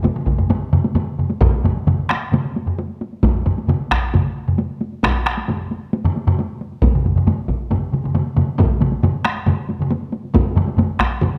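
Four taiko ensemble parts all enter at the very first second in a driving, powerful passage of Japanese traditional drumming, set in a straight 4/4 at about 134 BPM and speeding up throughout. Three parts are played with hard sticks and one with heavy sticks; two sound close and dry, while the other two ring up front in a live room. Close, detailed microphones capture the ensemble in a moderate recital hall reverb, and after a brief opening the main body begins at 1.4 seconds, running to the cut at 11.4 seconds in this section lifted from a longer piece.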